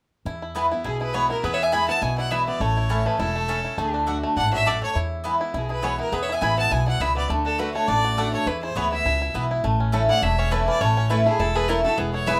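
A clear, lightly vibrato-tinged fiddle carries the melody from 0.9 seconds in this lively, joyful bluegrass excerpt at a swung 205 BPM in E mixolydian, joined by a nasal slide line on lap resonator guitar in the background, while a bright dreadnought guitar with audible finger squeak, twangy banjo arpeggios and double-strung mandolin stabs fill out the texture over a dark, woody pizzicato upright bass up front, all in light reverb.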